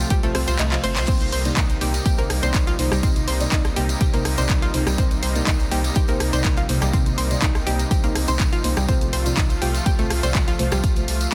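A lush supersaw pad and a round, deep analog bass open this dreamy, expansive progressive house excerpt in C dorian at 123 BPM on an F/C chord, joined almost at once by a bright filtered analog pluck playing arpeggios, soft detuned chord stabs with chorus, phaser and delay, a punchy overdriven electronic kick, a house kit of crash, handclaps, bright hats and rim click, a jingly distant tambourine and a faint reverse cymbal, with the pad, bass, pluck and stabs pumping to the sidechain; the kick drops out from 0.6 to 1.1 seconds under a drum fill starting at 0.7 seconds before the harmony settles on Cm7 and returns to F/C at 8.9 seconds, all in a dense, heavily limited master with light digital ambience.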